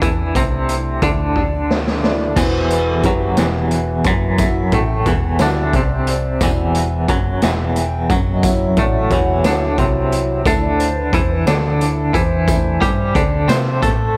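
Hypnotic and mysterious, this slow psychedelic rock excerpt in E minor sways in 6/8 at 59 BPM: a bright, twangy electric guitar riff drenched in tremolo and dub echo sits up front over a dark, round hollow-body bass, while a gritty garage drum kit with a boomy kick throws in a fill from 1.4 to 2.4 seconds, a reedy, breathing pedal harmonium carries a sustained-chord solo throughout, a distant, jingly tambourine joins in the background at 2.4 seconds, and the harmony shifts from Dsus2 to Emadd9 and back, all in an echo-heavy mix with moderate spring reverb.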